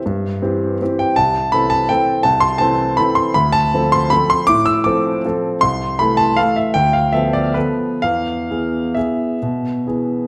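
This classical piano waltz, taken from a longer piece, carries a nostalgic, bittersweet mood in a flexible, rubato three-beat lilt. A solo grand piano plays throughout the passage, ranging from C2 up to E6. Its tone is clear and polished, with long sustain, and it sits up front and present in an intimate way, close enough that the action noise of the instrument is audible. The harmony drifts from C through Am/C, Dm7 and Bm7b5/D before arriving on E at 8.0 seconds, leaving the phrase poised and unresolved as the passage ends at 10.3 seconds. A wet recital hall reverb surrounds the instrument, giving each phrase a gentle halo of space.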